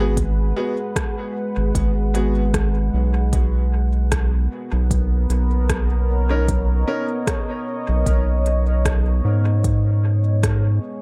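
Meditative and deep, this ambient dub excerpt moves at 76 BPM with a light 16th-note swing, its chords shifting from G#m7 to Bmaj9 and settling on G#m at 9.6 seconds. A moody, warbling pad with chorus and reverb sustains chords throughout, while a round, wave-folded analog bass sits up front and a woody, boxy upright piano plays short stabs through dub echo until 7.1 seconds. An overdriven electronic kick rests in the background alongside a produced kit of crisp hi-hats and rim clicks, also sent through dub echo, all within an echo-heavy digital ambience.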